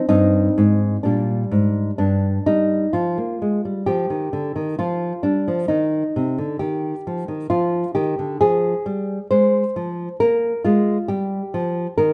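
A solo nylon-string guitar opens on a suspended G chord, its warm, thumb-plucked classical tone sitting up front in a moderate recital-hall reverb. This introspective, flowing baroque-style dance in C minor moves in a rubato 3/4 at around 62-68 BPM, spanning G2 to C5 as the harmony passes through F minor and B-flat before arriving on E-flat at 11.1 seconds. The brief passage is cut from a longer piece.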